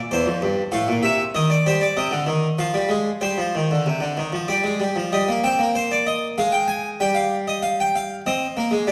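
A solo Flemish-style harpsichord, airy, plucked and brilliant with the full sound of three sets of strings, opens this solemn baroque-style two-part invention in 3/4, placed up front and spanning E2 to Ab5. The serious opening phrase moves through minor-key harmony and a suspended chord to an open-fifth close before a second section begins at 5.1 seconds, settling back onto the home minor chord near the end of this brief cut from a longer piece. A wet recital-hall reverb of about 1.4 seconds surrounds the instrument with the resonance of a church or concert hall.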